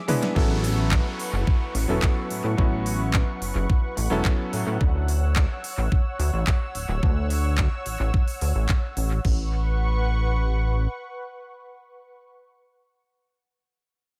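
An echo-heavy digital ambience surrounds this sunny, feel-good nu-disco fragment, cut from a longer piece, which opens on a short break and drum fill with a band accent before settling into a straight groove. The electronic kick drum sits up front with a knocking, layered punch and studio reverb, joined by a produced pop kit of fat snare, crisp hats, handclaps, toms and crash cymbal, treated with reverb and analog delay. A glossy, retro synth bass, also up front, blends pulse and sawtooth waves with pulse-width modulation, a filter pluck with fast attack and chorus, carrying the low end from 0.4 seconds to 10.9 seconds. A clear, vintage electric grand piano with a clangy low register and short sustain adds accompaniment through analog delay only for the first few seconds, while an electronic downlifter sweeps faintly in the background. Over it all hangs a lush, thick unison pad of detuned sawtooths, warbling with chorus and sidechain pumping, its slow attack and long release stretching to 12.2 seconds across A69 and Dmaj9 harmony.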